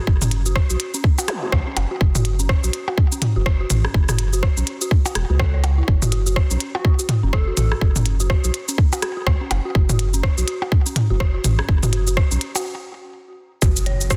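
A dry, dense and heavily limited mix opens this cool, sparse minimal techno excerpt in F# minor at 124 BPM with a 16th-note swing, where a tight, tape-warm kick sits up front beside a deep, round analog bass that pumps beneath clicky hats, rim clicks and a shaker, percussion blips and toms with delay that drop out at 12.6 seconds, an eerie, inharmonic detuned synth bell riff with chorus and tape echo, a gentle, warbling keys-like lead that surfaces in the background around 6.7 seconds, and an early electronic zap followed much later by a closing impact at 13.6 seconds after a brief break.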